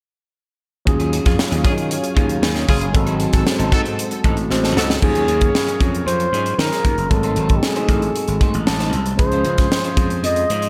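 A crisp fusion drum kit with a punchy kick and high-tuned snare drives this slick, bittersweet slice of polished 1980s jazz-funk pop at 115 BPM in Eb dorian, joined by a growly, overdriven slap bass, a barky tine electric piano with slapback echo and a fill at 8.4 s, a slightly broken-up picked electric guitar riff, a mellow, detuned analog pad that drops out at 5.0 s, and a smooth jazz horn section with tape echo, before a dark, breathy flugelhorn with light vibrato and scooped notes takes the melody from 5.0 s, the whole mix set in a lush hall reverb for a big arena sound.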